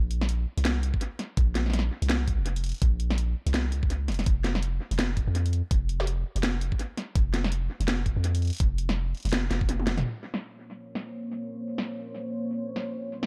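A half-time drum and bass groove at 166 BPM, swung on the sixteenths in Bb minor, sets a spacious, cinematic mood as a layered electronic kit with a cracking snare, bright hats and toms, low-pass filtered and fed through analog delay, sits up front beside a knocking electronic kick. A deep, mellow sine 808-style bass sustains long decaying notes through the first ten seconds, with a drum fill arriving at 9.7 seconds. At 10.0 seconds a moody, detuned sawtooth pad with a sub octave, chorus and sidechain pumping takes over on a Bbm chord while a filter sweep runs across the drums, all within an echo-heavy mix with light reverb.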